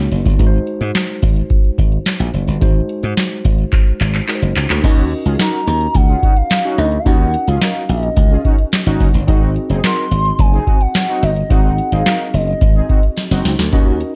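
Slick and funky, this early-eighties boogie funk excerpt moves at 108 BPM in a straight 4/4, driven by a booming analog drum machine with a deep kick, crisp snare, metallic hats and handclaps under gated reverb, alongside a punchy, bright slap bass up front and a worn, slightly out-of-tune tine electric piano providing accompaniment over Ab7 and Ebm7 chords. A close, jingly tambourine sits in the background, and a drum fill marks the turn into the second section at 4.8 seconds, where fat, brassy analog synth brass with chorus and vibrato takes a second line. At 5.4 seconds a hollow, woody clarinet-like synth lead, also chorused, carries the melody above, all set in a digital ambience.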